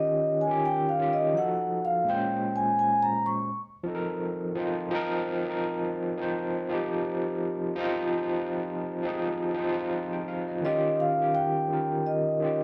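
R&B with a sultry, late-night mood, this short cut from a longer piece has a gently swung sixteenth-note feel and a band playing live in a stone room with a wet reverb. A mellow, ringing vibraphone played with soft mallets carries the melody up front, opening in the spotlight over a chord progression of rich ninths and altered dominants before falling silent at 3.6 seconds and returning at 10.6 seconds on an Eb9. Underneath throughout, an overdriven tine electric piano through a combo amp supplies barky, gritty accompaniment with a medium tremolo.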